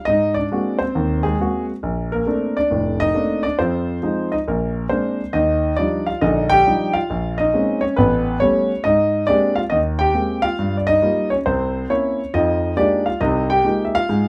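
Lightly reverberant and intimate, this relaxed solo jazz fragment, cut from a longer piece, puts a warm concert grand piano up front, its natural tone carrying deep bass and audible action noise as it swings through lush extended chords such as Bbmaj9, a fresh passage opening on Ebmaj9 at 5.3 seconds and drifting through C7b9 before settling on Fm11.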